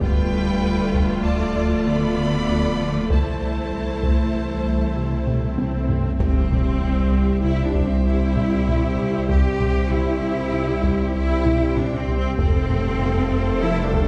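A cinematic hybrid orchestral and electronic film score in 5/4 at 97 BPM, vast and futuristic, where lush bowed violins carry a focused melody over a smooth second violin line, intense violas, close cellos, bright double basses and a very quiet French horn section holding sustained chords. Underneath, a rubbery, hollow square bass riff and a deep sine sub bass sit with a warbling, lo-fi tape-like pad thickened by chorus, while heavy-stick taiko drums play in the background throughout. Chords move from Dm through Am/C to C and Fadd9, and an electronic swell from 5.0 seconds and a drum fill at 5.3 seconds lead into an impact at 6.2 seconds, all set back in a wet scoring-stage reverb in this cut from a longer piece.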